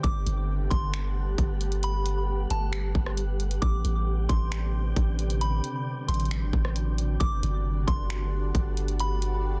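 A floating, blissful stretch of atmospheric cloud-rap opens with a delicate, tinkling FM tine bell melody warbling through chorus and tape echo over a shimmering, ethereal pad moving from Gmaj9 to Am11 and back, while a deep, mellow 808-style bass sits up front with a trap kit of hard-clipped kick, bright hats, finger snaps and rim clicks that stops at 9.3 seconds, and a breathy, wind-like noise texture drifts faintly beneath, all pressed into a dense, heavily limited mix.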